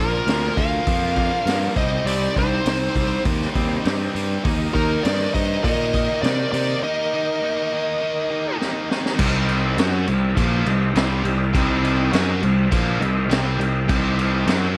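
A heavy, gritty blow of blues rock and southern rock fills a lightly reverberant space, cut from a longer piece and moving at 101 BPM in C minor with a straight 4/4 feel. A bright, overdriven lead guitar carries the melody up front over a second, mellower guitar line in the background until 8.6 seconds, when a drum fill from the vintage kit, with its punchy kick, high-tuned snare and dark cymbals, leads into the next section at 9.2 seconds. Underneath, a tight, double-tracked distorted guitar riff, a growly fuzz bass played with a pick, and a thick, gritty tonewheel organ holding sustained chords through chorus vibrato and a slow rotary speaker drive the progression from Bb to Cm to Eb and back to Cm.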